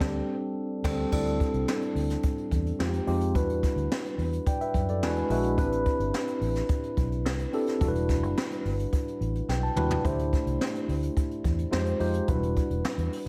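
A mellow tine electric piano sits up front in this slick, nocturnal slice of polished 1980s jazz-funk pop at 108 BPM in E minor, its clean, lush-chorused chords moving through sus4, minor ninth and eleventh colors and adding fills at 4.7 and 9.2 seconds. Beneath it, a dark, round, foam-muted fingered electric bass holds the low end with a punchy, amped tone, while a brush-played jazz kit with a boomy kick, high-tuned snare, dusky cymbals and gated reverb drives the groove and adds a fill at 9.5 seconds. The band opens on a shared accent before moving into the second section at 1.1 seconds, all set in a small, lightly reverberant room.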